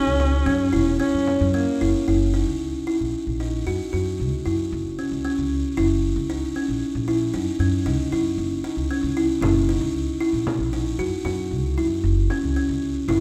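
This restless, hopeful contemporary chamber piece opens on an F#7 chord, with a buzzing kalimba ringing out airy arpeggios up front. Beneath it, a dark solo viola carries a bowed second line with expressive vibrato and portamento, while a delicate, bell-like celesta adds a mellow, vintage glint in the background. Set in F# mixolydian, the music moves in 7/4 at 114 BPM with a straight feel. An upright bass joins almost at once and stays up front through to the end, its pizzicato on steel strings sounding woody and bright. The viola and celesta fall away by 2.3 seconds, leaving kalimba and bass to carry the longer second stretch. A small acoustic frame drum is heard briefly at the start and returns in the background from 9.4 seconds, all within a light reverb.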